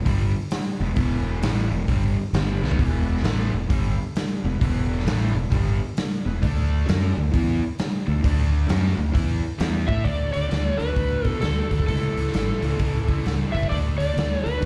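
Heard as a live gig through the venue's PA with club reverb, this swaggering, driving blues rock and southern rock power-trio excerpt swings at 132 BPM in 4/4, with a crunchy, double-tracked overdriven guitar riff with slapback echo riding over a growly fuzz bass placed up front, a raw garage drum kit with a tight kick that throws in a fill at 2.6 seconds, and a very quiet, gritty tonewheel organ through a slow rotary speaker holding sustained chords, until at 9.9 seconds a slide guitar played with fingerpicks takes the melody, prominent in the mix and echoed with slapback, shadowed by a very quiet, dark, distorted lead guitar playing a second line.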